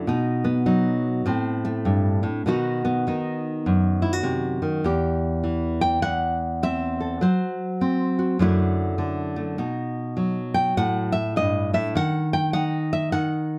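A solo nylon-string guitar carries this wistful, intimate folk fragment, its full-bodied, deep classical tone sitting up front with audible finger squeak as it is fingerpicked across a span from low E to high G in a lightly swung 4/4. The opening passage hovers around B and a suspended G chord before a second passage at 4.8 seconds moves through E minor, A minor over E, D with an added ninth over F sharp and F sharp minor seventh, closing on a rootless C diminished. A moderate studio reverb gives the guitar a modest sense of room in this short excerpt cut from a longer piece.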